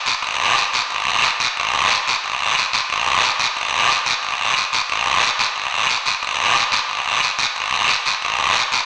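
A raspy, acoustic guiro sits up front from 0.1 seconds, carrying this joyful, danceable Latin fragment at a brisk 180 BPM in a straight 4/4 feel. Its vintage, band-limited tone rings out in a lush concert hall reverb with a 2.3-second decay, giving the short clip a spacious yet small-speaker character. Cut from a longer piece, it runs to 8.9 seconds.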